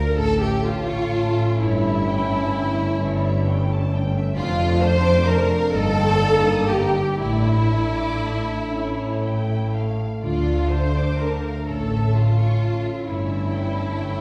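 Classical slow romantic orchestral movement, solemn and melancholic, in 6/8 at a rubato 39-45 BPM. A softly placed violin section carries the expressive vibrato melody while a lush, close second violin line sits up front over smooth violas, mellow French horn chords, a very quiet ringing harp arpeggio, focused cellos and a rich double bass foundation, all heard from further back in a reverberant recital hall, with round soft-mallet timpani touches at 0.0 and 10.2 seconds amid harmony that moves between A and D minor.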